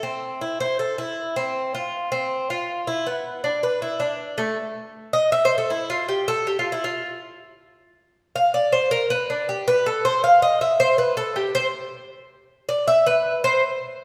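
A solo Cuban tres, picked on metallic double strings with some octave-doubled courses and sitting up front, carries this sunny, danceable Latin excerpt at 159 BPM in a straight 4/4, its warm acoustic tone ringing through a lush hall-like reverb as it plays from the start, moves into a new section at 4.6 seconds and stops at 13.6 seconds.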